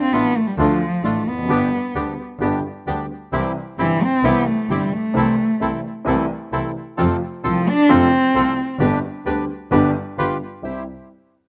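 The rhythm moves in a loose, rubato four-beat tango feel, a sultry and tense fragment cut from a longer piece. A dark, nasal cello carries the solo from the opening, bowed with vibrato and portamento and set up front, before falling silent at 8.8 seconds. Beneath it, a woody upright piano with long sustain plays accompaniment, a reedy, close-miked bandoneon adds full stabs, and a distant, earthy double bass holds the low end, bowed with light vibrato. A slapback echo marks the cello, piano and bandoneon, while the overall sound stays dry and open-air, with little reverb. The harmony travels from Dm through G, C, Am/C and F, then leans on G and G7 before landing on C at 10.6 seconds.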